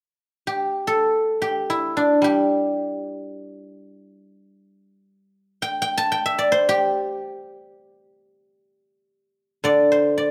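Chinese traditional solo plucked strings in free time, this pastoral, elegant excerpt features a single guzheng played with fingerpicks from 0.5 to 10.3 seconds, its silvery, ringing tone placed up front through close, detailed microphones with light reverb.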